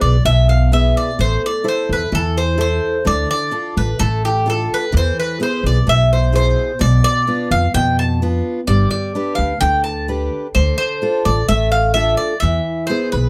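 Intense and dramatic, this Greek folk excerpt moves at 128 BPM in a straight 4/4, with all three parts playing together for its full 13.3 seconds. The Greek bouzouki carries the melody up front, its double strings giving a bright, metallic ring with some octave-doubled courses, sitting between G4 and A5. Beneath it, a picked steel-string acoustic guitar supplies accompaniment with an auditorium-body sparkle, while the pizzicato upright bass, woody and dark on steel strings, stands forward as the loudest part. The harmony starts on E, then turns through Am, Dm, E, Bdim, G and Dm before landing on E again, lending a tense, brooding pull. Close, detailed microphones and light reverb keep the sound intimate and clear.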